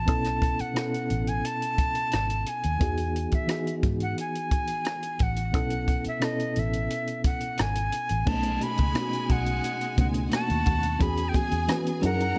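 Lush 1970s-style soul with a warm, romantic mood, taken from a longer piece and moving at an easy straight pulse in four. A breathy, bright jazz flute carries the melody up front, its straight tone and crisp, chiffy attack sitting high over a reedy electric piano whose worn, slightly out-of-tune voice pulses with a fast tremolo through its built-in speakers. Underneath, a vintage foam-muted fingered electric bass gives a round, dark, punchy bottom, while a compact cocktail drum kit, dry and close, supplies a punchy kick, hi-hat, rim clicks and dark crash cymbals. The chords move between B7sus4 and Emaj7 before shifting to B7 and landing on E6. At 8.3 seconds a clear, focused studio violin section enters as a bowed second line with vibrato, joined by very quiet, high-tuned congas played with soft hands that ring from a distant large room. The whole is set in a small room ambience that keeps the core band intimate.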